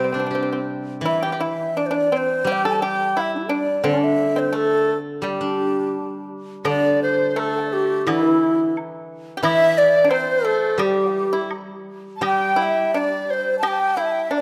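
This excerpt of Chinese traditional chamber music opens with an end-blown bamboo xiao carrying the melody up front, its breathy, straight tone and crisp attack sounding expressive over a pipa second line and a steel-string zither accompaniment. The pipa, played with fingerpicks, is dry and percussive, while the zither rings with a silvery shimmer. The mood is festive yet pastoral, and the two-beat metre feels elastic, with rubato and uneven beats. At 6.7 seconds a large bamboo dizi joins as another second line, bright and buzzing from its membrane, tongued with vibrato and an unsteady, close-miked edge, as a dark, very quiet woodblock enters alongside it. A moderate concert hall reverb surrounds the detailed sound of the ensemble.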